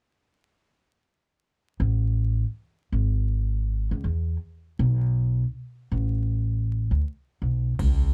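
A woody, thumpy pizzicato upright bass on gut strings opens this smooth jazz-hop fragment at 1.8 s, sitting up front in A major at a swung 80 BPM, before a booming, overdriven analog drum machine with a deep kick and ride cymbal, re-recorded in a large room, appears only briefly at 7.8 s, all within a dark, dry production dusted with vinyl crackle.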